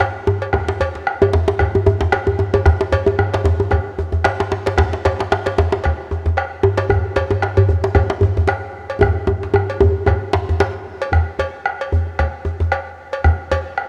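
A tight, cracking djembe played with soft hands sits up front in this powerful, earthy West African drum ensemble at 113 BPM in 4/4, its sixteenths lightly swung, until it drops out at 10.7 seconds. A second djembe carrying metal rattles, a round, up-front bombo and a metallic cowbell fill out the groove, with drum fills arriving around 2.3 and 9.0 seconds before a short closing section begins at 11.1 seconds. The close drums sit in a lush hall reverb on a homemade cassette recording cut from a longer piece.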